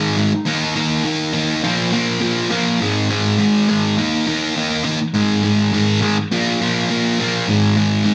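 A straight 4/4 at 205 BPM carries this urgent, angry punk fragment, where a lone sludgy, overdriven electric guitar, picked and double-tracked up front, moves through Eb5, Bb5 and Ab5 chords in a small, moderately reverberant studio room for 8.1 seconds, shifting into a new section at 2.8 seconds, all tuned to A4 = 441 Hz.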